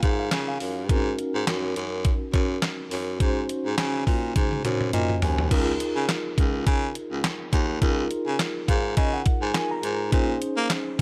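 Early-eighties boogie funk in Db major at 104 BPM with a light sixteenth-note swing, smooth and feel-good, cut from a longer piece. A breathy, raspy baritone saxophone carries the bass line up front with light vibrato and a gritty edge, a clean tine electric piano with medium tremolo through a combo amp plays accompaniment and fills, including one from 8.4 to 10.1 seconds, and a detuned 8-bit drum machine with a thumpy kick, handclaps and toms sounds as if re-recorded in a large room, adding a fill before the second section begins at 5.5 seconds, all over chords moving from Db69 to Ab7sus4 and ending on Bbm11.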